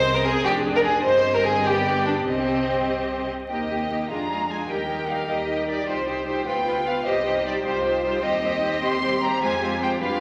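Violins, violas, cellos and double basses sound together from the start of this urgent, restless excerpt of a quick classical-period movement for string orchestra in C minor, moving in a straight 6/8 at 101 BPM, with a smooth, even violin melody, a focused second violin line set close and up front, an expressive viola accompaniment marked by portamento, lush cellos in the background and a warm double bass, every section bowed with vibrato inside a wet concert hall reverb under a layer of vinyl crackle.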